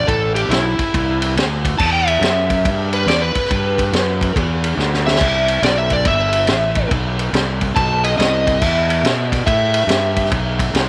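An overdriven slide guitar with tape echo and a growly, fuzz-driven fingered bass start together in this heavy, smoky blues rock and southern rock power-trio passage in E minor at 141 BPM with a swung 4/4 feel, the guitar playing a solo across the cut over the bass and an up-front vintage kit of punchy kick, high-tuned snare and dark crash and ride cymbals, with a drum fill at 4.8 seconds as the chords move from Am and Em7 through Cmaj7 and B to closing E5, A5 and B5 power chords in a small room with light reverb.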